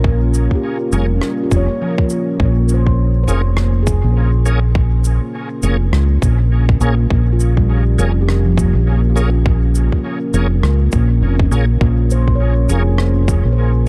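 A deep, moody sawtooth pad with chorus and its own reverb opens this meditative ambient dub excerpt alongside ringing stainless-steel handpan arpeggios trailing dub echo, a round, punchy, tube-saturated fingered electric bass and a tight, overdriven electronic kick up front, with a brushed cabasa and rim click in dub echo joining at 0.3 seconds and a shouting, lightly overdriven tonewheel organ with key click, chorus vibrato and slow rotary speaker adding echoing stabs from 0.9 seconds, all resting on a single Bbm7 chord in a dark, warm production.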